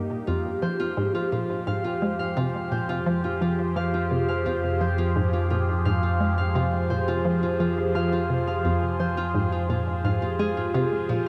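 Expansive and mysterious, this excerpt of ambient, sequencer-driven space music floats in a vast, echoing cathedral reverb with a cassette-tape grain. A swirling, up-front phased analog pad holds sustained chords over a fat analog bass, while a squelchy, resonant blip pluck repeats a riff through tape echo. At 0.3 seconds a fingerpicked Celtic harp joins with ringing arpeggios, its notes also carried by tape echo.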